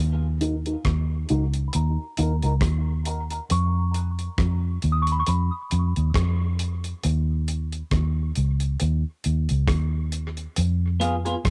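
Recorded at home on cassette with studio ambience and a filter sweep running through its whole length, this hypnotic, meditative dub reggae excerpt moves at 68 BPM in 4/4 with a light sixteenth-note swing, beginning on E-flat minor. An up-front, round, foam-muted fingered electric bass with tube saturation anchors it from the start, joined by a dry, damped 70s kit of hi-hat, tight kick and rim click, while a twangy, scooped clean electric guitar with lush chorus and tape echo adds brief accompaniment. A delicate, bell-like small celesta, filtered and echoed on tape, carries the sweet melody from 1.7 to 6.6 seconds.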